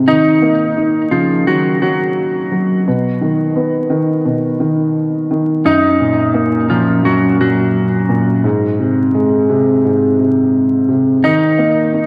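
A dark, worn grand piano opens this reflective, gritty hip hop excerpt at 86 BPM in Eb minor, joined at 0.1 s by a clean, fingered electric guitar melody carrying spring reverb and delay, both up front over a swung 16th-note feel and a chord cycle of Ebm7, B, Gbmaj7 and Ab that settles on Eb5, all set in a dreamy, reverb-soaked hall mix with vinyl crackle.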